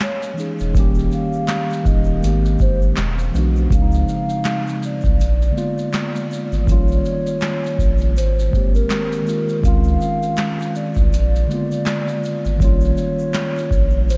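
A hollow, woody synth lead with chorus, vibrato and tape echo carries the melody over a dreamy, nostalgic lo-fi hip hop groove at 81 BPM, swung on the sixteenths. Up front, a booming analog drum machine sets a deep kick against a crisp snare, handclaps and metallic hats. A very quiet, grainy tube shaker sits beneath it. The mellow tine electric piano enters at 0.3 seconds with a cassette-tinged, filtered sound, and a thick, saturated sub bass follows at 0.6 seconds. Together they move through lush chords such as Abmaj9, Dbmaj9 and Bb7b9 under a light digital ambience.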